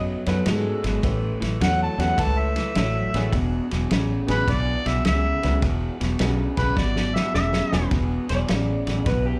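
Electric blues shuffle at 105 BPM in E mixolydian, laid-back and gritty, heard live through a club PA, where a mellow, vintage harmonica with scooped notes carries the melody over a slightly broken-up guitar riff, a dark, round fingered bass and a tight soul drum kit, with a woody upright piano in the background, a second guitar line flickering in at 0.3 seconds, a drum fill from 6.8 seconds and a clean electric guitar solo taking over at 7.9 seconds as the chords move through B9, A9 and E9 in this short fragment of a longer piece.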